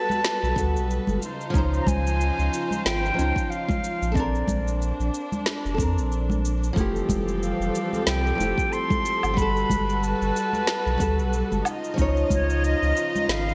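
Sunset chillout with a blissful, relaxed mood and a gently swung sixteenth-note feel, cut from a longer piece and carried by lush major-ninth harmony. A reedy silver concert flute sings the airy, straight-toned, tongued melody with rolled-off highs and a digital delay, while a dark, fingerpicked flamenco guitar accompanies with audible finger squeak, vintage 12-bit sampler grit and its own delay. A chamber string section holds intimate sul tasto chords with light vibrato beneath them. Layered electronic cabasa, woody snare and woodblock arrive at 0.1 s, dressed in studio and gated reverb, alongside bright, close congas played with soft hands in the background. A round, sine-like sub bass sits up front from 0.4 s, and a deep electronic kick with studio reverb joins at 0.6 s. The whole mix glows with a bright 1980s-style digital sheen and a lush hall ambience.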